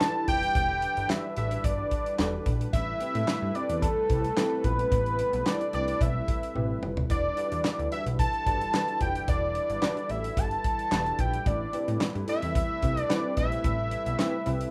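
Slick and funky, this excerpt of early-eighties boogie funk moves at 110 BPM in E minor, with a fat, detuned sawtooth lead carrying the up-front melody through vibrato, a filter sweep, a sub octave and slapback echo. A worn, slightly out-of-tune tine electric piano played through a combo amp with tube saturation and ensemble chorus accompanies over Em7 and Am9, while a smooth, slow-attack analog pad holds chorused chords in the background. A dry, up-front 70s drum kit with tight kick, medium-tuned snare, toms, hi-hat and handclaps drives the groove and plays a fill at 6.6 seconds, a punchy, plucky analog bass enters at 0.3 seconds, and the whole sounds like a rough home demo in a small room.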